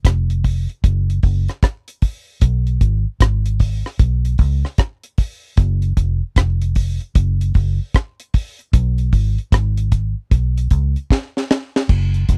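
A relaxed 76 BPM groove in 4/4 swings its sixteenths, giving this roots reggae excerpt a laid-back, uplifting lilt from the first beat to its end at 12.4 seconds. A deep reggae drum kit carries the pulse throughout, its acoustic sound dark and smooth with a high-tuned snare, a tight kick, rim clicks, hi-hat and crash cymbal, the top end rolled off and the kit placed up front. Beneath it, a vintage fingered electric bass plays in its low register, foam-muted, round and punchy through an amp, sitting just as close to the listener. A short drum fill arrives at 11.1 seconds, near the end of the passage. The recording is dry and close in a 1970s studio manner, with little reverb, and the instruments are tuned to A4 = 439 Hz.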